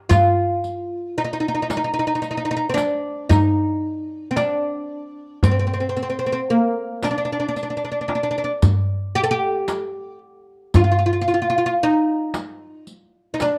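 A straight 10/8 cycle at 113 BPM in eighths drives this hypnotic, longing Arabic maqam ensemble piece in D maqam kurd, tuned to A4 = 439 Hz, where a crisp, deep metal-shell darbuka struck with hard hands sits up front beside a lower-level riq with bright jingles, while a plectrum-plucked fretless oud with woody double strings carries the melody between Bb3 and A4, touched by plate reverb, all within a dark production and moderate studio reverb until this passage ends at 13.6 seconds.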